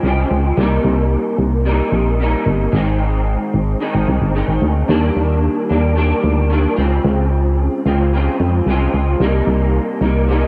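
An electric guitar through a small old amp and a solid FM bass open this laid-back, nostalgic indie and bedroom pop passage together, cut from a longer piece in a straight 4/4. The guitar is dark, slightly broken-up and lo-fi, its fingered, compressed tone colored by an ensemble chorus with a warbly pitch drift. The punchy, round FM bass sits up front under a light reverb as the harmony moves from Dbmaj7 through Cm7, Ab and Ebmaj7 before returning to Dbmaj7 and Cm7 by 9.2 seconds.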